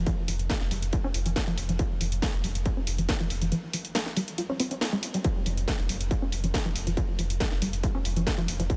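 A deep, saturated sub bass opens this short cut from a longer piece of driving peak-time techno, its thick triangle tone sustained and pumping against the sidechain under a low-pass filter. Almost at once, at 0.1 seconds, a distorted, layered electronic kick arrives alongside a techno drum kit with a cracking snare and warm hi-hats that also pump with the sidechain, both kits carrying the air of a large room and the hats and snare sitting up front. Over this, a detuned sawtooth pluck in unison plays the riff, its punchy, fast-decaying notes bathed in lush chorus and tape echo. The mood is industrial and intense, with a straight, relentless feel and a light reverb tying the parts together. All four parts play throughout the single section, which runs to 8.8 seconds.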